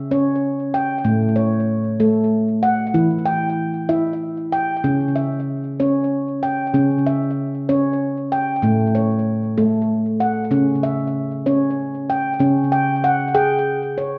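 World meditative music in a slow 6/8, this brief excerpt features a solo handpan whose ringing nitrided steel tones, sounded with the fingertips, sit up front with a touch of delay. Drifting through minor and major chords before settling on an open fifth at 12.4 seconds, the hypnotic playing is wrapped in a wet recital-hall reverb and small-room ambience. A cassette-tape character lends the instrument a vintage, band-limited glow.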